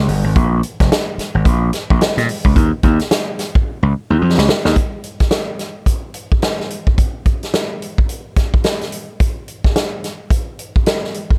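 Sly and driving, this funk excerpt moves at 108 BPM in Bb dorian with a swung sixteenth-note feel. A gritty, bright slap bass with overdrive sits up front alongside an acoustic big-band drum kit of hi-hat, punchy kick and medium-tuned snare, captured naturally in a big room. A drum fill at 3.7 seconds leads into the next section, where the bass drops out at 4.7 seconds and the drums carry on alone under light reverb.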